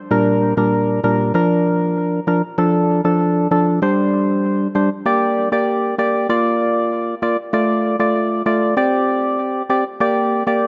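A percussive organ stab carries this sultry, bouncy dancehall excerpt alone from 0.1 to 10.7 seconds. Its hollow, dark tone has a fast attack and a decaying tail, built from sine and triangle layers with a touch of noise, and it sits up front, spanning Bb2 to D5. Chorus and a digital delay color the stab, while light reverb surrounds the recording and the top end stops at 7.7 kHz. In D minor at 97 BPM in a straight 4/4, the harmony cycles through Gm/Bb, Bb, Dm and Csus2. A short opening passage gives way at 2.6 seconds to a longer stretch that runs to the end of this cut from a longer piece.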